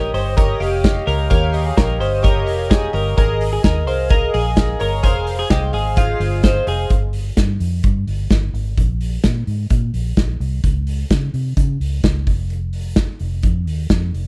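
A dry, close-sounding cut from a longer jangly indie pop track in F minor, moving at 129 BPM with a wistful, restless air. Chorused retro synth keys with a glossy pulse-wave sheen, including a brief fill at 2.2 seconds, sit beside a twangy, compressed twelve-string electric guitar playing arpeggios over Eb7, Absus2 and Fm, until both stop at 6.9 seconds. From there the dark, foam-muted fingered bass and the loose indie drum kit, its punchy kick and snare up front in a pumping small room, carry on as a pair to the end.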